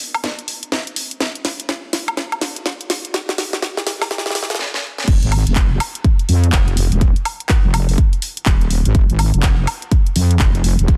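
Aggressive and swaggering, this clip of swung bass house opens on a build-up of garage drum kit fills, with crash cymbal, handclaps, hi-hat, woodblock and a cracking, softly clipped snare, joined by a punchy, tape-warm electronic kick, until a heavy, saturated wobble bass with chorus and sidechain pumping drops in at 5.1 seconds, all upfront in a dense, heavily limited, dry mix.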